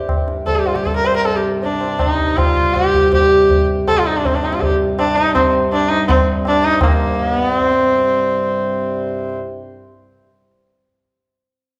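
A reedy, breathing pedal harmonium drone opens this introspective, meditative Hindustani classical passage, joined by low-tuned, ringing tabla in an uneven five-beat metre until 6.9 seconds, while an up-front bowed sarangi carries a nasal, biting, earthy melody with gliding portamento, light vibrato and sympathetic strings, all speeding up within the lingering reverb of a recital hall.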